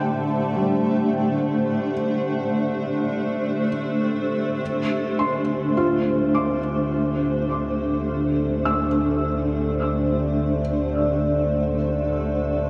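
A blurred, evolving granular cloud pad sits up front in this reflective, melancholic ambient passage in free time and D minor, tuned to A4 = 438 Hz, holding sustained chords with its own reverb while a filter sweep shapes it over Am7 until the harmony settles onto Dm7 at 4.6 seconds. Beneath it, a resonant, detuned drone with moving overtones holds D3 through chorus and reverb, and a soft, felt-muted upright piano adds intimate arpeggios with audible action noise, trailing into a diffuse delay. From 4.6 seconds a deep, round sine sub bass fades in on D2, and the whole excerpt is bathed in the long, wet wash of a vast cathedral space.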